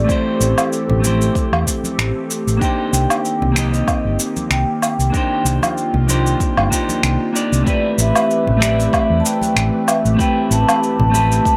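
A lightly swung 95 BPM groove in 4/4 sets a smooth, wistful sunset chillout mood in A minor, with a deep, tape-warm electronic kick and gritty, up-front sampled cabasa, woodblock and finger snaps entering at 0.1 seconds, while bright, close congas with hard hands sit in the background from 0.9 seconds. A round, dark hollow-body fingered bass with tube saturation anchors the low end as a clean, picked electric guitar with tape echo plays accompaniment, and an airy, breathy pad with chorus and a slow attack holds sustained chords moving from Am7 to Cm9 and on to Am9. Over this, a mellow vibraphone played with soft mallets carries the melody, its metallic ringing tone shaped by slow motor vibrato and tape echo, all set in light digital ambience in this section cut from a longer piece.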